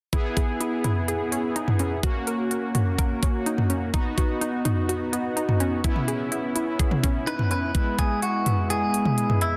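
Synth-pop at 126 BPM with an upbeat, bright mood, built on a layered electronic drum kit with a knocking kick and crisp hats, while a fat, detuned analog synth brass with a filter sweep holds sustained chords up front through E, F#, B and C#m7. A round sawtooth-and-square pluck with a noise layer, chorus and delay spins arpeggios in the background until 7.7 s. At 7.3 s a twangy, picked clean electric guitar with spring reverb takes the melody, just before the chords return to E. A lush hall reverb surrounds the dense, heavily limited modern mix of this short cut from a longer piece.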